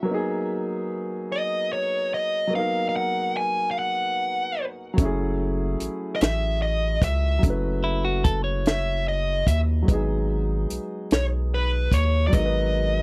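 A warm concert grand piano opens this slow, sultry six-eight R&B passage, its deep-bassed tone laying down lush minor-ninth chords. At 1.3 seconds a dark, overdriven lead guitar steps up front with a yearning, picked melody sitting above the piano. At 5.0 seconds a round analog bass and a compact cocktail drum kit enter together: the bass is nasal and sustained with a fast-attack filter pluck, and the small acoustic kit brings a punchy kick, a high-tuned snare and hi-hat. Briefly in the middle, a clean, compressed electric guitar adds a picked second line beneath the lead. The sound is dry and close, like a 1970s studio session, with little reverb, keeping the drums and bass especially present in this short fragment of a longer piece.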